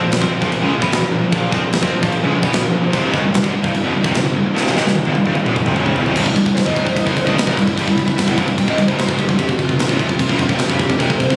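A straight 4/4 pulse at 149 BPM drives this heavy, dark metal excerpt in C phrygian dominant, cut from a longer piece. Three distorted guitars play the riff from the start, with the high-gain parts bright and picked and one of them double-tracked, sitting back in the mix over a growly, punchy bass with fuzz and overdrive. Up front, a tight metal drum kit with a medium-tuned snare, crash cymbal and toms sounds gritty and saturated in a big room, playing a fill from 4.5 to 6.2 seconds. At 6.6 seconds a dark, bluesy overdriven lead guitar adds a melody above the riff. The chords move from Bb5 to C and then to F5, and the whole track carries light reverb and was recorded on a phone in the room.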